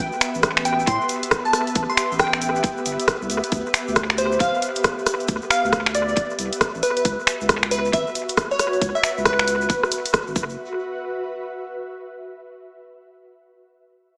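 Echo-heavy and soaked in a moderate plate reverb, this moody, bouncy two-step UK garage excerpt has a small-speaker sound, swinging at 136 BPM in 4/4 as a drop cut from a longer piece. A dry, up-front analog drum machine drives the groove with finger snaps, hi-hat and rim click, joined by a tight, tape-tinged electronic kick and a grainy shaker sitting in the background with analog delay. Underneath, a deep, thick sub bass with tube saturation holds the low end, while a soft, breathy pad with chorus and sidechain pumping sustains chords that move from A7(no3) through D5 and C#m7 to F#sus4. On top, a crystalline wavetable pluck carries the melody with chorus and analog delay, its detuned, ring-modulated tone shaped by a filter sweep and a moving notch. An ethereal, mellow pad with ensemble chorus and its own reverb drifts through the mix, then lingers alone from 10.6 s to 12.3 s over an F#7sus4.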